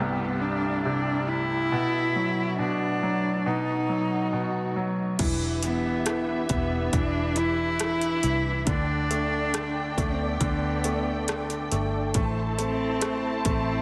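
A slow, straight 4/4 at 69 BPM carries this melancholic, heartbroken pop ballad in E minor, where an intimate solo cello sings the melody with a soft, airy sul tasto tone and vibrato over a brilliant, polished grand piano with slapback echo and a lush, woody bed of sustained studio strings. At 5.2 s a round, foam-muted vintage electric bass and a punchy, layered, overdriven electronic drum kit enter, the kit's punchy kick, metallic hi-hat, rim clicks and crash cymbal sitting up front. A concert hall reverb lends the whole a big arena sound, and the passage is cut from a longer piece.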